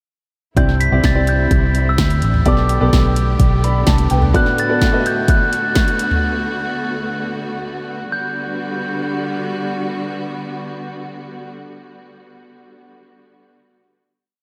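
A mellow, bell-like glockenspiel played with rubber mallets carries a motif-based melody through an analog delay in this uplifting piano-driven pop piece in G major at 127 BPM. Alongside it from the start are a clear grand piano playing syncopated chords with grace notes and short fills through analog chorus, a lush bowed string pad, a round, foam-muted electric bass, and a punchy, stomping four-on-the-floor deep house kit. The bass drops out at 4.3 s and the piano and drums by 6.3 s, leaving glockenspiel and strings to ring into a final Gmaj7 chord that lasts until 11.5 s, all bathed in a dreamy, huge ambient reverb.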